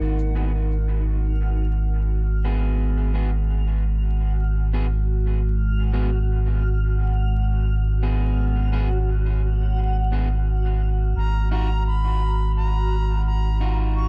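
An echo-heavy, vinyl-crackled mix frames this hazy, spacious ambient fragment, where a round sub bass sits up front beneath a dark, detuned pad under a filter sweep, a dreamy reversed texture, and dub-echoed stabs from a slightly broken-up electric guitar, until a bright, reedy flute enters at 11.2 seconds as the G#m7 harmony shifts to D#madd9/G#.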